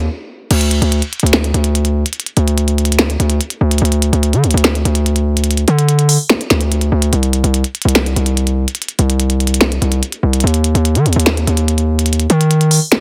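Dry and heavily squeezed into a dense, radio-ready sound, this eerie, brooding trap cut runs at 145 BPM in a half-time feel and is taken from a longer piece. A punchy, saturated 808-style sine bass with a noise layer and fast attack opens alone at 0.0 seconds. At 0.5 seconds an up-front electronic kit enters, with clicky hi-hats, a tiny snare, finger snaps and crash cymbal carrying a small-room character.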